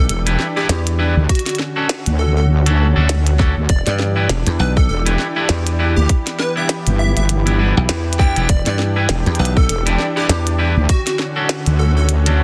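A catchy, bright unison lead with lush chorus and delay opens this swaggering, playful glitch hop excerpt at 100 BPM in E dorian, over a smooth, vintage analog pad, a punchy foam-muted slap bass and a heavy, saturated wobble bass, while a nostalgic lo-fi tape-like pad, a twangy, slightly broken-up electric guitar playing stabs with delay, and a glitchy kit of tiny snare and clicky, overdriven hats swing on 16ths before a tight, layered electronic kick lands up front at 1.3 s, the pads and guitar pumping over Em7 and Dmaj7 in a dense, heavily limited mix.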